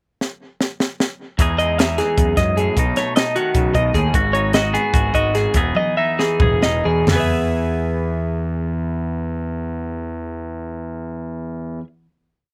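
A crisp fusion drum kit opens with a fill at 0.2 seconds, its high-tuned snare and punchy kick sitting up front in an airy, polished sound. At 1.4 seconds the band enters in a lopsided 7/8 groove: a fuzzy, overdriven picked bass tied to the kick drum and a twangy, scooped clean electric guitar with slapback echo adding syncopated fingerstyle accompaniment. A moment later, at 1.6 seconds, a compressed twelve-string electric guitar joins with a warm arpeggiated ostinato. This bright, wistful blend of math rock and midwest emo moves through a short cycle of jazzy seventh chords, and the pace gradually slows through the second half as another drum fill leads toward the close. At 7.1 seconds the drums drop out and the guitars and bass hold a final chord that rings on. The mix is dry and immediate, with little reverb and an open-air feel.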